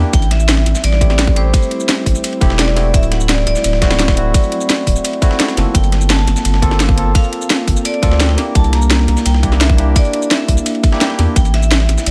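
Liquid drum and bass in a lush, melancholic mood, cut from a longer piece, where a ringing vibraphone played with hard mallets carries the melody through dub echo over a bell-like tine electric piano and a very quiet, ethereal airy pad holding sustained chords, while a deep, thick saturated sub bass sits up front beside a tight, overdriven electronic kick, a garage kit with a cracking snare, hi-hat and shaker, and a gritty, compressed sampler-style soul kit of ride and snare tucked in the background, all in a light digital ambience.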